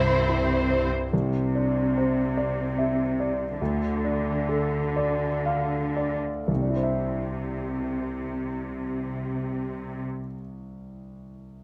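Tender and moving, this cinematic fragment in C major drifts in a rubato 6/8 at roughly 38-50 BPM, slowing down through its first 6.5 seconds. Violins carry the melody with portamento and lush vibrato, joined by a background violin line, a smooth-topped viola section and a clear, distant double bass section, all of which stop at 0.9 s. A concert grand with deep bass accompanies until 11.6 s, and a smooth, even cello section holds the low end until 10.0 s over chords moving from C through Cadd9 and Dm, closely miked in light reverb.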